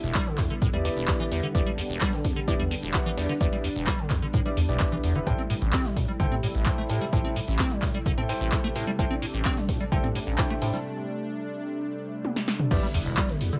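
A squelchy, resonant square-wave acid bass carries the riff in this gritty, trippy acid house cut, its filter sweeps colored by phaser, tube saturation, lush chorus and cassette tape. Beneath it a deep, round sine sub bass sits in the background with sidechain pumping, while a detuned sawtooth pad holds soft-attack chords with chorus, pumping and a moving notch, shifting from Em7 to Am7 at 5.3 seconds. A punchy electronic kick and a tape-warm analog drum machine with snare, handclaps, hi-hat, shaker, toms and crash cymbal drive the groove, both re-recorded in a small room, with a big-room acoustic arena kit barely audible behind them. From 0.7 seconds an intimate, polished concert grand piano, with audible action noise and long sustain, plays stabs through cassette tape and analog delay. A break arrives at 10.8 seconds, a drum fill leads back to Em7, and a very quiet electronic impact closes the excerpt, all set in light reverb with the lo-fi character of a home cassette recording.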